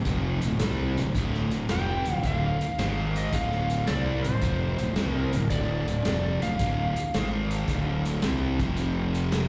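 A thick, double-tracked fuzz guitar riff and a growly, overdriven fingered bass open this smoky, heavy blues rock and southern rock excerpt together, both sitting up front, with the guitar's distortion carrying a slapback echo. A vintage acoustic drum kit joins almost at once on hi-hat, kick and snare, its muffled, lo-fi sound coming from a small room with a tight kick, a medium-tuned snare and a rolled-off top. At 1.7 seconds a bright, overdriven slide guitar played with fingerpicks takes the melody high above the riff, also touched by slapback echo, and it stops at 8.0 seconds. The groove swings in four, moving from D minor to a G#5 power chord and back before closing on D5 and F5 chords. Heard as a live gig through the venue's PA, the band sits in a light recital-hall reverb, and the passage is cut from a longer piece.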